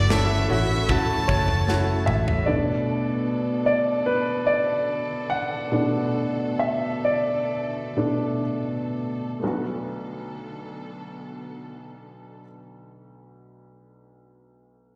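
Heard as a live gig through the venue's PA with recital hall reverb and small room ambience, this heartbroken, longing pop ballad fragment in B minor at 59-76 BPM opens on F#m7 with a clear, vibrato-laden bowed violin melody carrying slapback echo and delay, a woody upright piano up front, lush sustained string section chords and a round, foam-muted vintage fingered electric bass. An acoustic drum kit with a tight kick joins a moment later, and its fill from 1.7 to 2.5 seconds leads into Bm7 and a slowing upright piano solo that runs until 9.4 seconds while the strings hold on beneath it.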